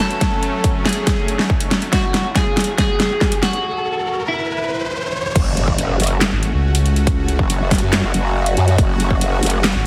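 A half-time 4/4 pulse at 140 BPM drives this chaotic, menacing heavy wobble dubstep in F# minor, where a twangy, slightly broken-up electric guitar carries the melody through lush chorus and dub echo until 4.8 s over a detuned supersaw pad pumping with sidechain, while a layered drum kit with a huge snare, metallic hats, handclaps and crash joins a punchy, overdriven electronic kick and a riser builds toward the drop. At 5.4 s an impact hits and a growling, distorted unison bass comes in, soon joined at 6.3 s by a dark, nasal vowel-sweep wobble bass with chorus and overdrive. The sound is heavily compressed and radio-like, set in a moderate plate reverb, with the basses and drums pushed up front.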